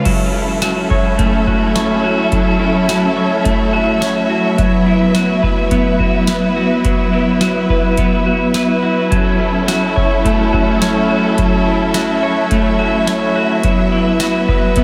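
A slightly broken-up electric guitar, dark and picked, sits up front playing arpeggios through analog chorus and delay, from the very start to 14.8 seconds. This is a melancholic, ethereal dream pop excerpt in F# minor at 106 BPM in a straight 4/4, cut from a longer piece. Alongside the guitar, a dark studio string section, also up front, holds sustained chords, bowed with vibrato and a lush, smooth top. A booming analog drum machine enters at 0.1 seconds, its deep kick, crisp snare, metallic hi-hat, crash cymbal and tambourine carrying a tape-warm electronic weight. The harmony moves between F#m7 and Bsus4 over an F# bass, and the whole mix is soaked in a huge ambient reverb that lingers for seconds.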